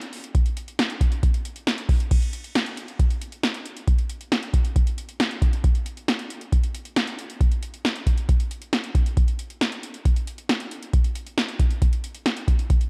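Cool and nocturnal, this short pop cut from a longer piece moves at a straight 136 BPM in 4/4. An electronic analog drum machine carries the whole recording from 0.0 to 12.9 seconds, sitting up front with a deep kick, a punchy snare, metallic hi-hats and a crash cymbal. Its tone has a tape-warm character. The arrangement shifts into a new section at 2.1 seconds and holds there to the close. A light reverb and a dark, warm overall production give the beat a late-night, shadowy feel.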